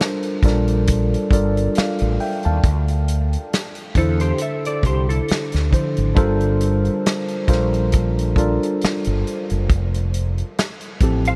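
R&B and neo-soul with an introspective, smooth mood and a gentle swing, cut from a longer piece and bathed in a huge ambient reverb that gives the mix a dreamy glow. A worn, slightly out-of-tune tine electric piano with lush chorus comps through Gm11, Dm9 and Fmaj9 over a dry, natural soul kit of tight kick, medium-tuned snare and hi-hat. A round, punchy fretless bass joins at 0.4 seconds, and a dark, picked hollow-body jazz guitar with ensemble chorus adds a quieter second line from 4.0 seconds.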